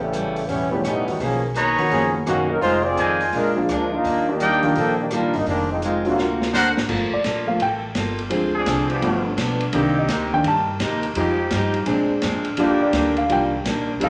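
A clear, tight trombone section carries the opening solo of this swinging, dramatic big band excerpt, with bright, close-miked trumpet stabs entering at 1.6 s and a drum fill closing the first section. A dark, mellow baby grand piano then takes the solo from 6.9 s, backed from 8.5 s by a second trombone section in sustained chords. Underneath, a picked steel-string acoustic guitar, a woody pizzicato upright bass and a vintage kit with punchy kick and dark cymbals drive the swing, all set in a large studio reverb.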